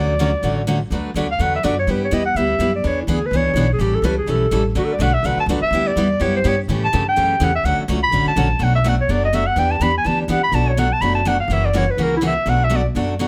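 Bright, full-bodied picked acoustic guitar with audible finger squeak, thumpy pizzicato upright bass and a smooth, vibrato-rich clarinet open this playful, swinging gypsy-jazz fragment together, with the clarinet soloing up front from 0.9 s with soft-attacked, scooped notes over rich jazz chords in a moderate studio reverb.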